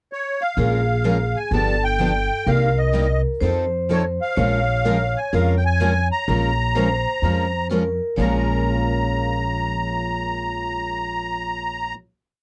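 Bittersweet and fiery, this short jazz manouche piece in Bb minor swings at 126 BPM, opening with a reedy, shimmering musette accordion that carries a motif-based melody from a pickup at 0.1 s; at 0.6 s it is joined by a ringing vibraphone counter-melody played with medium hard mallets and the motor off, a boxy parlour guitar keeping four-to-the-bar time with short accents on two and four and audible finger squeak, a full-bodied dreadnought second rhythm guitar, and a thumpy, woody gut-string upright bass playing a two-beat root-and-fifth line up front, captured in a close 1970s-style studio sound with little reverb before arriving on a final chord at 8.2 s.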